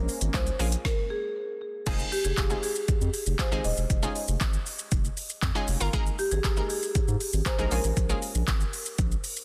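A dense, heavily limited modern master in digital ambience carries this summery, carefree dance-pop fragment, where close-miked, dry marimba with medium mallets and tape echo carries the melody over a detuned, chorused analog pluck and a thick, saturated sine sub bass, both pumping under an up-front deep house kit of deep kick, woody snare, smooth hats, handclaps, shaker and crash, while a resonant, evolving pad with chorus sounds only until 0.8 s, ahead of a stop that runs to 1.9 s.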